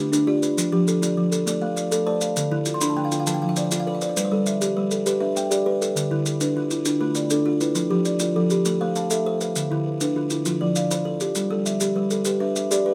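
A buzzing, thumb-plucked kalimba rings out up front in this hypnotic excerpt of southern African traditional music, weaving an mbira-style interlocking cycle of arpeggios in 12/8 at 133 BPM with a straight feel in G mixolydian. A second, mellow, fingertip-plucked kalimba with a woody, hollow-box tone and a soft, vintage, band-limited sound adds its own arpeggios and plays a fill from 2.6 to 4.2 seconds, just before the progression moves beyond Dm, F and Am to include G. Grainy, compressed, saturated maracas add a quiet acoustic texture underneath, all set in a moderate studio reverb.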